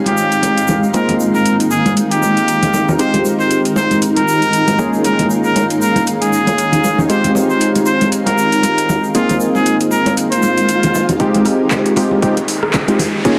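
A nasal, up-front trumpet with straight mute carries a jazz-style solo melody through a late-night deep house excerpt in F minor at 117 BPM, over round, detuned analog key stabs with chorus, tape echo and a filter sweep, a cloudy granular pad pumping under a sidechain, metallic-hatted overdriven drums with handclaps and rim click, ringing congas and a grainy tube shaker. An electronic swell and riser build from 10.4 seconds, and a deep, overdriven electronic kick drops in at 11.2 seconds, all set in moderate plate reverb with a dense, heavily limited master and vinyl crackle.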